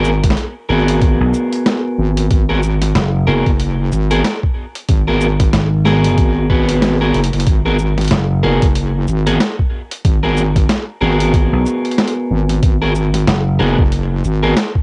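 Glitch hop at 93 BPM in G# minor, this funky, swaggering excerpt swings its 16ths over a single G#m9 chord, with a gritty, pitched-down boom bap drum kit of hi-hat, shaker and high-tuned snare joined at 0.2 seconds by a thumpy electronic kick, and a drum fill at 7.1 seconds. A heavy, square-and-sine wobble bass with chorus and tube saturation sits up front alongside a punchy, amped vintage slap bass that enters at 1.2 seconds, while a slightly broken-up picked electric guitar plays stabs through spring reverb, analog delay, sidechain pumping and cassette tape coloring. The whole thing carries the light reverb of a home recording on cassette.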